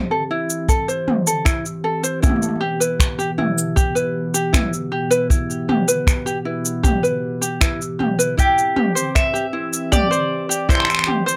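A warbling, detuned pad with chorus and a fingerpicked ukulele with tape echo open this delicate, pastoral folktronica piece at 78 BPM over Am and Em/B, joined at 0.5 s by a tape-warm minimal click kit of finger snaps, shaker and toms and then a boomy brushed kick, before a round, double-strung mandolin carries the melody from 8.4 s as the harmony moves to C, in a modest small-room ambience.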